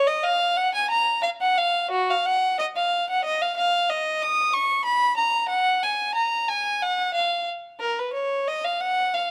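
The rhythm moves in a supple triple metre at around 92 BPM, with uneven beats and a rubato lilt that lets each bar breathe. This is a brief, grave yet flowing classical fragment in the manner of a baroque suite movement, played by one unaccompanied violin from 0.0 to 9.3 seconds. The bowed tone is rich and carries vibrato, ranging from Gb4 up to Eb6, where the upper notes stay smooth. The violin sits up front, caught by close, detailed microphones with a light touch of reverb around it. Its even, smooth line is tuned to A4 = 439 Hz, and the passage is cut from a longer piece.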